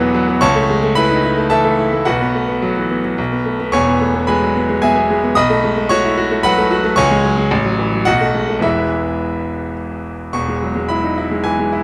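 Set in 3/4 at about 109 BPM, the music moves with a free, rubato pulse, pressing ahead and pulling back in the manner of a virtuoso piano study. This classical fragment, cut from a longer piece, sits in E major with a brilliant, heroic mood. A solo grand piano carries everything from 0.0 to 11.8 seconds, ranging from a deep E1 up to D#6, and its tone is bright and polished, with long sustain and the soft mechanical noise of the action audible under the notes. The harmony travels from A over C# through suspended colours on B to a firm E chord at 3.7 seconds, then through B7, C#5 and F#m7 over A back to B7 and a return to E at 8.6 seconds before the opening idea starts again. Close, detailed microphones keep the instrument intimate and up front, while a moderate recital hall reverb adds a sense of space around it.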